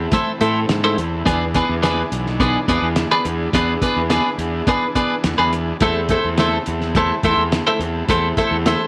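A straight 4/4 pulse at 105 BPM drives this hypnotic, mysterious psychedelic rock excerpt, where muffled, cloth-damped drums with a fat snare and tight kick sit under an up-front fuzz bass with overdrive, a bright, twangy twelve-string electric guitar riff shimmers through harmonic tremolo, and a buzzy combo organ with light vibrato holds sustained chords in the background, all cycling through Am/E and E7 in a small room with light reverb.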